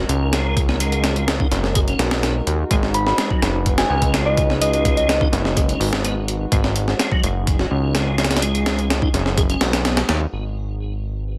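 Funky and gritty, this breakbeat excerpt moves at 126 BPM in G# minor, driven by a compressed, pitched-up sampler drum kit with a thumpy kick and medium-tuned snare sitting up front beside a fat, detuned sawtooth analog bass. A lightly overdriven tonewheel organ plays a piping, scooped riff with key click, slow rotary speaker and 12-bit sampler grit, while a warbling, nostalgic tape-like pad holds G#m7 chords in the background with chorus and phaser. A soft, pure FM bell melody appears from 2.9 to 5.2 seconds through a telephone-like filter and digital delay, and at 10.3 seconds a filter sweep passes over the pad as the organ and drums have just dropped out.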